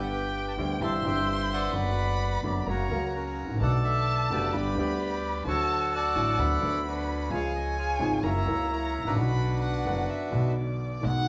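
A reedy, airy bandoneon stands out front, carrying the melody of this tense, sultry tango in B minor, a short cut from a longer piece that moves at 129 BPM in 4/4 with a rubato feel. Alongside it, a solo bowed violin adds a second line with vibrato and portamento, its tone smooth and expressive. A clear, present concert grand piano, slightly worn with deep bass and short sustain, sits up front as accompaniment, while a pizzicato upright bass with steel strings gives a woody, growly foundation. The harmony passes through chords such as G, Bm/F#, C# and F#7 before settling on Bm, and the bandoneon stops at 10.5 seconds as the other parts carry on to 11.3 seconds. The band plays live together in one room, bathed in a wet large-studio reverb.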